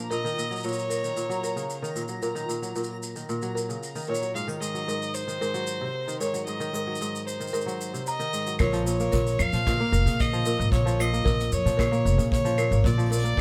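Folktronica in Bb minor at 113 BPM, this wistful, autumnal excerpt moves in a straight 4/4 and is cut from a longer piece. A mellow, ringing kora sits up front with fingerpicked arpeggios through a low-pass filter and delay, while a rich, bowed violin carries the melody with vibrato and a smooth, even tone, its line touched by delay. Behind them, a buzzing marimba with medium mallets plays a dry, dark second line through digital delay, and a soft brush drum kit taps out claves, hi-hat, rim click and shaker in a small, natural-sounding room. A reversed, swelling, detuned granular texture with built-in reverb hovers in the background until 8.6 seconds, when the chords shift from Ebm7 and Ab7 to Bbm. At that point a woody pizzicato upright bass and a tight, brushed kick drum enter, giving the closing passage a firmer floor under light studio reverb.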